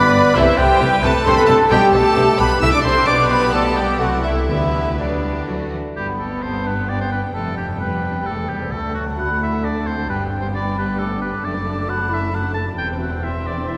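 Bathed in a long, wet church reverb, this cheerful, graceful excerpt from a quick classical-period symphony movement in G major (3/4, 132 BPM, with a rubato feel) sets an intimate, softly attacked violin melody alongside a bright, present oboe, an airy, hollow flute and a very quiet second violin line, while background violas, mellow horn chords, dark trumpet stabs that stop at 5.7 s and rich, smooth cellos and double basses fill out the orchestra, touched by very quiet hard-mallet timpani at 4.5 s.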